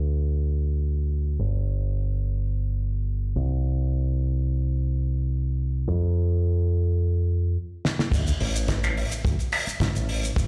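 An up-front fingered electric bass with an envelope filter and tube saturation carries this sleek, cosmic nu-disco excerpt alone at first, sounding direct in D minor at 107 BPM. During a stop that begins at 7.6 seconds, a damped 70s drum kit with a fat snare, dark cymbals, hi-hat, crash, cabasa and finger snaps enters with a fill at 7.8 seconds. A tight kick with a rolled-off top joins the drop at 8.1 seconds, the drums carrying studio reverb while the whole piece sounds as if played on a big system in a bare stone room.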